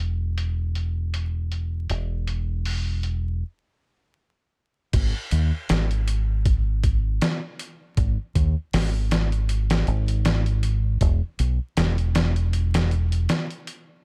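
Cinematic and smoky, this trip hop excerpt moves at an unhurried 79 BPM with a light swing, built on a round, punchy fingered electric bass that sits up front. The sampler-style drum kit is compressed, gritty and pitched down, with a thumpy kick, medium-tuned snare, hi-hat and crash cymbal, all low-pass filtered. Vinyl crackle and digital ambience wrap the dark production, and a full stop from 3.4 to 4.9 seconds sets up the next section before the bass drops out at 13.3 seconds.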